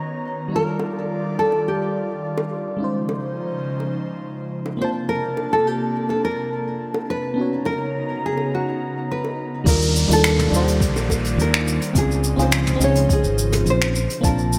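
A mellow, phaser-tinged FM electric piano and a breathy, chorused pad open this blissful, smooth sunset chillout excerpt at 105 BPM in Eb lydian, tuned slightly low to A4 = 438 Hz. A dark, full-bodied fingerpicked nylon-string guitar carries the up-front melody with digital delay from 0.6 seconds over soft, high-tuned bongos in the background. At 9.7 seconds a round fretless bass, a tape-warm electronic kick, a brushed jazz kit with finger snaps, hi-hat, shaker, toms and gated reverb, and an electronic downlifter join, all set in a lush hall and bright 1980s-style digital production.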